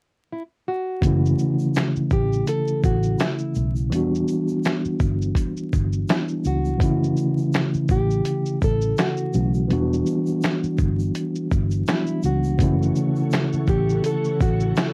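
A relaxed 83 BPM lo-fi hip hop groove in 4/4 with a lazy swing on the sixteenths sets a reflective, melancholic tone in F# phrygian, as a small, fingerpicked nylon-string guitar carries the melody from 0.3 seconds and a gritty, compressed sampler-style kit with a thumpy kick, snare, hi-hat, finger snaps and shaker sits up front alongside a mellow tine electric piano at 1.0 seconds. A dark, foam-muted fingered electric bass and a grainy tube shaker tucked in the background fill out the slow drift between F#m7 and Em7, with cassette tape coloring the drums and piano. At 12.6 seconds a full-bodied, slow-attack string machine with cellos adds sustained chorused chords, and the whole fragment, cut from a longer piece, carries light reverb and vinyl crackle in a homespun cassette sound.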